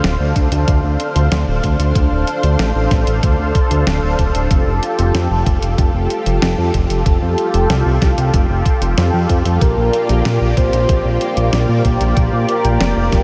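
A silky, chorused string pad and a fat, detuned sawtooth bass, both pumping to the sidechain, open this nostalgic, nocturnal synthwave excerpt over the hi-hat and fat snare of a clean, tape-toned 12-bit drum machine; a thumpy electronic kick joins at 0.4 s, and at 9.6 s a round, octave-layered synth lead with chorus and diffuse delay drifts into a dreamy mix soaked in huge ambient reverb as the chords move from Dm7 through Fadd9 to Bb6.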